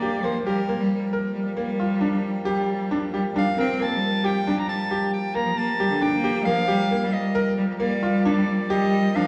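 This excerpt of contemporary chamber music opens with all four parts sounding together at once, set in G minor at 135 BPM in an uneven 7/4 with a straight feel. A clear soprano saxophone carries the melody between Bb4 and Bb5 in a classical style with light vibrato, placed up front yet with a distant, roomy quality. A vintage-toned grand piano plays arpeggios with short sustain, while a single bowed cello supplies the bass line with a rich, even tone and vibrato, both up front. In the background, a pedal harmonium holds sustained chords with a reedy, breathing, dark character. The passage opens on a Gm7 chord and is heard from further back in a concert hall with a wet reverb, giving the 9.3 seconds a pensive yet urgent mood.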